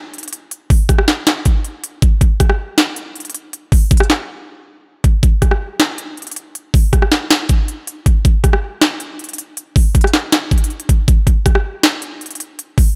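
A trap drum kit carries this melancholic, eerie hip hop excerpt on its own, running from 0.1 to 12.9 seconds with a half-time feel in 4/4. The electronic, produced kit sits up front with overdrive, pairing a knocking kick and sharp snare with crisp hi-hats, rim clicks and handclaps. The opening section gives way to a brief break from 4.3 to 5.0 seconds before the second section begins at 5.0 seconds. The dry sound carries little reverb, keeping the gritty drums close and immediate. It plays as a fragment cut from a longer piece.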